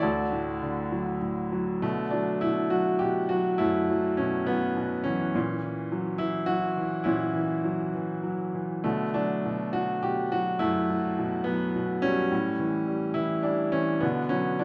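This is a classical solo piano excerpt, lyrical and rubato in a lilting triple metre, with a moody, cool character. A single grand piano carries the whole piece from 0.0 to 14.6 seconds, its tone bright and brilliant yet natural, sitting up front in the sound. It ranges from D2 in the bass up to D5, giving the writing a full but unhurried spread across the keyboard. After a brief opening on D, the music settles at 1.8 seconds into a longer passage built around Bm7, passing through F#7/A# and an A5 before coming to rest on Bm at 14.0 seconds. A moderate concert hall reverb surrounds the piano with a gentle sense of space, and the recording is cut from a longer piece.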